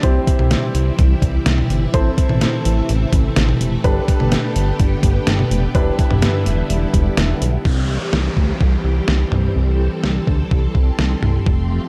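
An overdriven, detuned 8-bit drum machine with a thumpy kick and fat snare sits up front in this nostalgic, bright synth-pop excerpt at 126 BPM in C major, alongside a glossy, chorused synth bass of pulse and sawtooth tones, shimmering, warbling string-machine violins with ensemble chorus, and a smooth, vintage grand piano that stops at 7.6 seconds as an electronic downlifter enters at 7.7 seconds, all in a dark production with recital-hall reverb while the chords move from C through Am, Gadd9 and Em7 back to C.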